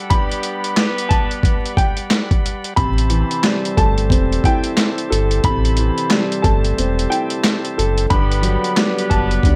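A swung boom-bap groove at 90 BPM in 4/4 drives this short, nostalgic hip-hop excerpt. Gritty, sampler-style drums sit up front with a thumpy kick, a medium-tuned snare, hi-hat and handclaps, all overdriven and compressed. The kick drops out between 6.8 and 8.1 seconds. A lightly overdriven tonewheel organ holds full, vibrato-tinged chords from Gmaj7 into Am7. A bright, woody upright piano with audible action noise and a slightly detuned edge carries a high melody through tape echo. Mellow, distant horn stabs doubled in octaves punctuate the opening break and return when the harmony settles back on Gmaj7 at 8.1 seconds. From 2.8 seconds a deep sine sub bass and a dark, boxy concert grand piano fill out the low end, all beneath light reverb and a steady bed of vinyl crackle.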